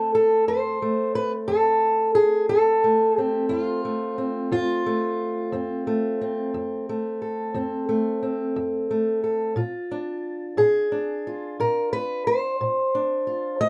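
A fingerpicked old ladder-braced acoustic guitar carries this short excerpt of acoustic country blues entirely on its own, sitting up front with a dark, woody, boxy tone and the dull bite of old strings. The mood is gritty and swaggering, moving at an unhurried pace in a rolling 12/8 metre that is played straight. The guitar ranges from a low F2 up to Eb5, resting on an F chord before shifting to Bb at 9.6 seconds. A moderate booth ambience gives the sound a close, dry setting, and the top end is rolled off, adding to its aged, earthy character. The clip runs 13.7 seconds and is cut from a longer piece.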